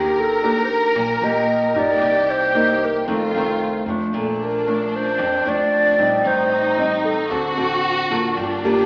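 Melancholic and intimate, this brief bossa nova fragment sets a hollow, airy alto flute melody with a soft attack and close presence over a lush bowed violin section that carries a smooth second line with vibrato. A small, thumb-plucked nylon-string guitar with audible finger squeak sits up front in the accompaniment, while a thumpy, woody pizzicato upright bass stays far down in the mix. The ensemble rings in a wet recital-hall reverb with a narrow, AM-radio tone.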